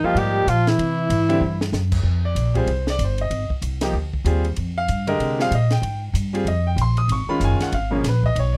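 A vibrato-rich, vintage alto saxophone carries the melody up front for the first 1.7 seconds, shadowed by a breathy, whispered tenor saxophone on a soft-edged second line, before both fall away and leave a clear baby grand piano with long sustain, a woody pizzicato upright bass and a dry cocktail drum kit with dark cymbals, a high-tuned snare and a punchy kick. This spiritual, intense modal jazz excerpt sits in F dorian at 190 BPM in a swung 4/4, with harmony moving from Bb7sus4 through C to Fm11 at 2.0 seconds and later to Abm11. A drum fill at 1.4 seconds marks the turn, and the close, detailed sound carries little reverb.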